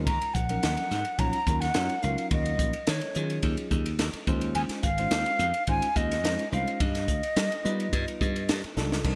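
A straight 4/4 groove at 107 BPM drives this funky, nocturnal piece of electric jazz fusion in Eb dorian, cut from a longer piece. The crisp acoustic drum kit sits up front with a high-tuned snare, punchy kick, hi-hat, ride and crash, its small pumping room wrapped in gated reverb, and it caps the passage with a fill at 8.8 seconds. Beneath it, an amped slap bass with a bright, direct attack carries the low end, while a clean tine electric piano comps quietly in the background through its built-in speakers. Up front, a mellow silver concert flute sings the melody with an airy tone, soft attack and expressive vibrato, falling silent at 8.5 seconds. The harmony moves from Ebm9 to Dbmaj9 to G7b13, and the whole production has a bright 1980s digital sheen with light small-room ambience.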